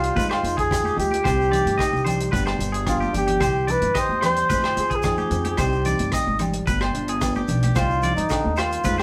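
A bucket-muted trumpet leads from the first moment with a veiled, jazz-style melody full of scooped notes and light vibrato, sitting up front over fingerpicked flamenco guitar, bright twangy electric guitar arpeggios, woody pizzicato upright bass and a dry, tight soul drum kit. Maracas, high-tuned congas and ringing agogo bells slip in behind within the first second, and a short drum fill at 3.0 seconds leads into the return to C minor in the progression. This bittersweet, warm highlife band cut sounds like musicians playing live together in one room with moderate studio reverb.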